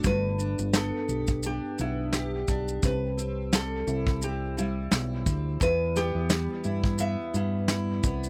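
A lightly swung 86 BPM groove in 4/4 carries this carefree, easy-going acoustic pop excerpt in G major, where soft brush drums with a tight kick, shaker and snare sit up front beside a dark, round, punchy fingered electric bass, a full-bodied double-tracked steel-string acoustic guitar picks its accompaniment through G, C and Em, and a bright fingerpicked nylon-string guitar with audible finger squeak and slapback echo plays the melody from 0.1 to 8.0 seconds, all in a dry outdoor sound.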